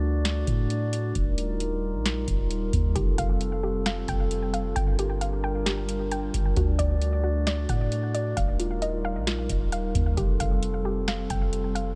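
The booming analog drum machine sets a half-time groove at 133 BPM, its deep kick, tonal snare and metallic hats dry and up front, while a soft 808-style bass adds deep, round sine tones that decay darkly beneath. Over this ethereal, melancholic cloud-rap passage, cut from a longer piece, a glassy glass harmonica holds sustained chords with slow attacks and beating in a boxy small room, pumping under sidechain as the harmony moves from D through Ebadd9, Fadd9 and Gm7. From 3.0 seconds a soft, gentle pluck joins with dark arpeggios coloured by chorus, a low-pass filter and tape echo, all set in a digital ambience.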